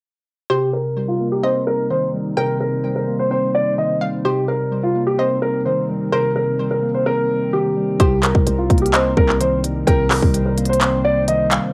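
A half-time 4/4 pulse at 128 BPM in C minor drives this menacing, eerie trap hip hop excerpt, where a dark, short-sustained grand piano carries the melody up front over a clean tine electric piano, a hollow, nasal square-wave pluck with chorus and tape echo, and a warbling, nostalgic pad sitting back on a Cm7 chord, while a filter sweep runs through the opening before a trap kit with crisp hats, handclaps and a hard-clipped kick arrives with a growling, buzzy 808 bass at 8.0 s, and cassette-tape grit colours the keys, pluck, pad and drums.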